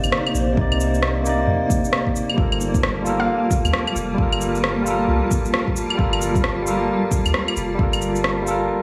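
A swung 4/4 groove at 133 BPM drives this rainy, wistful future garage excerpt in G minor, built on up-front electronic shaker, claves and rim click, joined at 0.6 s by a deep, tape-warm electronic kick, both re-recorded in a large room. A bright, barky tine electric piano through a combo amp carries the Cm9 to Gm9 chords with 12-bit sampler grit, tape echo and a filter sweep, over a blurred, evolving granular cloud pad and a round, soft 808-style bass, these three pumping with the sidechain. At 3.2 s a hollow, bouncy square pluck sounds a single F5 with chorus and tape echo, and a moderate recital hall reverb gives the mix its space.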